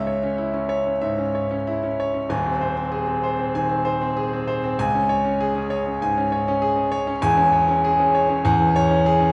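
A clear, intimate grand piano sits up front with audible action noise, playing alone through this 9.3-second passage from a passionate, stormy classical virtuoso study in C# minor at 98 BPM with a rubato feel, its natural tone ringing from the bass to the upper register inside a reverberant recital hall.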